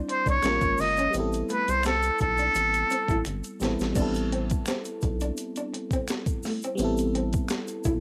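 Lightly swung sixteenths from a gritty, overdriven boom bap sampler kit with a thumpy kick and high-tuned snare anchor this soulful, introspective neo-soul R&B fragment, where a rubbery square-wave bass, a glassy FM electric piano with chorus and phaser, a dark hollow-body jazz guitar and a background egg shaker with finger snaps sit beneath a breathy, nasal straight-muted trumpet that carries the melody until 3.2 seconds, just before a drum fill at 3.3 seconds, with the drums, piano, guitar and trumpet all bearing a cassette-tape colouring.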